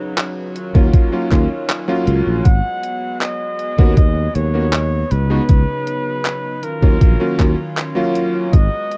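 A dark, dry cassette-tape sound frames this nostalgic, hazy vaporwave fragment, cut from a longer piece and moving at 79 BPM in a straight 4/4. A soft, floating string section opens at 0.0 s with sustained chords, joined by an overdriven, detuned 8-bit drum machine playing handclaps and hi-hat, while a thumpy, overdriven electronic kick sits up front. A growly, punchy fretless electric bass with tube saturation holds the low end, and a bright electric grand piano with a clangy low register carries the accompaniment through lush chorus, 12-bit sampler grit and analog delay. At 2.4 s a clear flugelhorn enters with the melody, played in a jazz style with vibrato and trailed by tape echo. The harmony drifts through C#9sus4, D#m9 and G#m11, lending the passage a suspended, dreamy colour.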